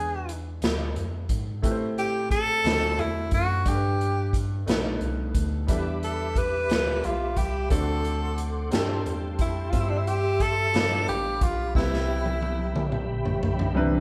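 Jubilant and uplifting, this slow gospel excerpt in C major sways in 6/8 at 59 BPM. A breathy, up-front tenor saxophone sings the melody with vibrato and scooped jazz phrasing over a clear concert grand piano and a mellow tine electric piano carrying the bass line, while a dark, smooth big-band drum kit with a punchy kick adds a fill from 11.8 seconds. A soft, flute-like tonewheel organ joins at 5.7 seconds with slow rotary speaker, chorus vibrato and key click, and the whole band plays live in a large studio room with moderate reverb.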